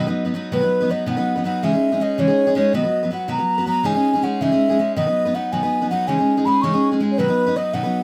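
An airy, wooden baroque flute carries the tongued, vibrato-tinged melody over a full-bodied, up-front picked steel-string acoustic guitar from the first second of this rollicking, lively Celtic folk jig in 6/8 at 108 BPM, which is cut from a longer piece in B major (tuned to A4 = 438 Hz) and alternates between B and C#madd9 chords inside a moderate booth ambience.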